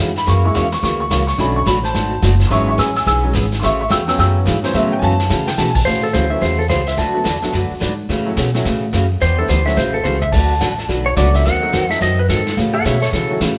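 A swung 215 BPM beat in 4/4 drives this playful, down-home western swing cut in A major, with woody pizzicato upright bass up front, a bright jumbo acoustic guitar picking out an accompaniment and a vintage brush kit with punchy kick and rolled-off top, heard together in a moderate stone room. The brilliant, open upright piano takes the solo until 5.9 seconds, when a dark, compressed lap steel enters up front with slide and volume swells for its own solo. The harmony moves through F#7, Bm7, E6 and A6, later touching D6 and D#dim7 before landing on A6, in a passage cut from a longer piece.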